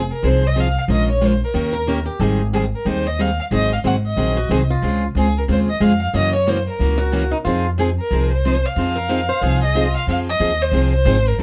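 A bowed violin and a pizzicato upright bass open this fiery, virtuosic cut of acoustic string swing in the jazz manouche style, moving at a brisk 183 BPM in F minor with a light swing on the eighth notes. The single violin carries the melody up front, its warm, expressive tone shaped by vibrato and portamento and set in a plate reverb. The bass sits close and woody, with a thumpy attack on its steel strings, while a picked steel-string guitar supplies bright accompaniment with fresh strings and audible finger squeak. At 1.7 seconds a second picked guitar adds a boxy, swinging counter-line that carries on until a new section begins at 10.1 seconds. The harmony runs through Fm7, Bbm7, Eb7, Abmaj7, Ab7, Dbmaj7 and Gb7 before returning to Fm7, all captured with close, detailed microphones and a light room reverb in this excerpt from a longer piece.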